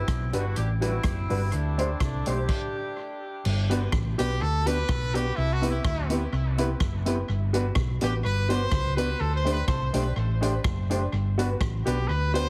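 A lightly swung ska groove in 4/4 drives this upbeat, joyful piece. A vintage drum kit with punchy kick, rim click, hi-hat and dark crash cymbal, touched with tape echo, joins an up-front, round hollow-body bass, clean hollow-body jazz guitar accompaniment and a woody, slightly detuned upright piano playing stabs from the background. A mellow, distant horn section with tape echo carries the opening melody until 3.2 seconds, and after a brief stop a trumpet solo enters at 4.2 seconds, brilliant and forceful with light vibrato and its own tape echo, all set in light reverb and a heavily compressed, radio-like sound.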